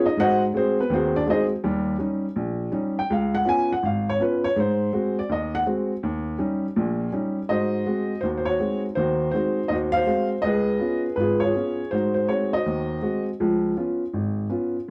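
A dark upright piano opens the recording alone, playing solo jazz at a brisk 163 BPM in 4/4 with a relaxed swing on the eighth notes. The mood is swinging and warm, moving through Ab7, Eb7 and Db7 chords in Ab mixolydian, and the playing spans from the deep bass register up into the upper middle of the keyboard. The instrument sounds woody and a little boxy, with long sustain and audible action noise that gives the performance an intimate, close-up quality. The piano sits up front, and a moderate club reverb suggests a listener placed further back in the room. The first section of chord changes runs to 7.5 seconds, and a second section carries on until the piece is cut off at 14.9 seconds, partway through a longer performance.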